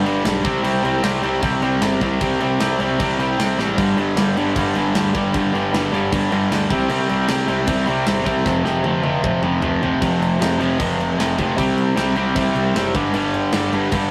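A straight 4/4 pulse drives this upbeat, rebellious punk rock excerpt at 154 BPM, cut from a longer piece. A crunchy, double-tracked overdriven guitar sits up front, picking a riff over the C5, G5 and F5 power chords. Beneath it, a growly fuzz bass with overdrive stays in the background, playing the bass line. A tight metal drum kit with a tight kick, a medium-tuned snare, toms and bright crash cymbals keeps things pushing, adding a quick fill at 3.6 seconds and a longer one from 8.5 to 10.0 seconds that carries the band into the second section. The whole take has a rough rehearsal-room character with moderate studio ambience, giving it a raw, live energy.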